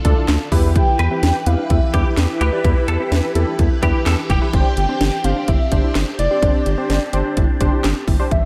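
A straight 4/4 groove from a punchy, overdriven house drum kit, with cracking snare, handclaps and hi-hat, drives this nostalgic, bright synth-pop excerpt, anchored by a deep, round analog bass up front, while mellow analog keys, a swirling phased string machine and soft, dark pluck arpeggios in the background fill out a Dm, Em and Gsus4 progression beneath a velvety, detuned synth lead melody that enters at 0.8 s, joined from 1.0 to 4.4 s by a twangy, direct-recorded clean electric guitar second line, in a lightly reverberant space.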